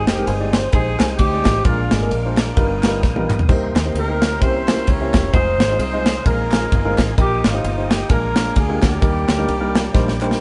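A mellow, distant horn section carries the melody over woody upright piano, a lightly overdriven tonewheel organ with slow rotary speaker and chorus vibrato in the background, and punchy fingered electric bass in this hopeful, reverent uptempo gospel excerpt at 130 BPM in Eb major with a light swing, while a tight, dry funk drum kit sits up front with fills at 3.0 and 9.9 seconds, the piano adds its own closing fill, and very quiet, crisp handclaps round out the sound of a live band playing together in a stone room.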